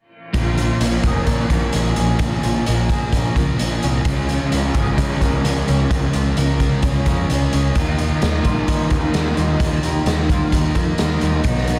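A straight 130 BPM beat in 4/4 drives this hazy, blissful shoegaze and dream pop fragment, with a saturated, gritty garage drum kit placed up front, its punchy kick and medium-tuned snare set in a bright stone room yet rolled off on top. A thick, dark fuzz guitar carries the riff and a growling, overdriven picked bass holds down the low end over chords moving from Bbm7 to Db6 to Ebsus2, while a raw, overdriven garage guitar with reverse reverb sits in the background. A boxy, shimmering twelve-string acoustic guitar adds octave-doubled arpeggios with lush chorus and slapback echo, and the whole mix is dense and heavily limited in a small room.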